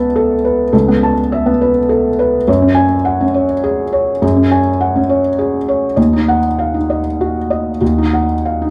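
A felt-muted upright piano plays alone, soft, intimate and up front with audible action noise, in this hopeful, tender neoclassical minimalist fragment of 8.7 seconds, cut from a longer piece, its uneven 3/4 pulse loosened by rubato as it moves through Aadd9/C#, F#sus2 and D#madd9 within the moderate reverb of a large studio room.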